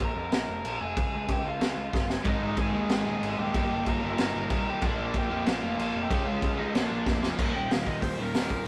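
Punk rock with an energetic, upbeat drive, this excerpt opens in half time with a biting, overdriven lead guitar carrying the melody over a growly fuzz bass and a raw garage drum kit that sits up front, its punchy kick, high-tuned snare and dark cymbals saturated and gritty in a small, pumping room. At 2.2 seconds, during a drum fill, three picked riff guitars join: a crunchy double-tracked one in the background, a bright distorted one and a sludgy one, the latter two very quiet. At 7.4 seconds the lead guitar breaks into a solo, all caught in a rough rehearsal-room recording with light reverb.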